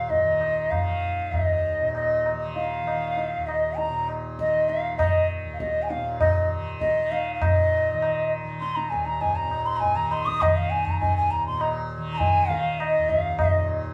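Hindustani classical music with a serene, devotional mood, set in 4/4 at 99 BPM with a straight feel, and gradually speeding up across this short cut from a longer piece. An airy, bright bamboo bansuri carries the melody up front with vibrato and tongued notes, while a softly plucked tanpura lays down a buzzing, shimmering drone beneath it. High-tuned tabla rings out close and dry, all three playing live together in one room with a wet studio reverb.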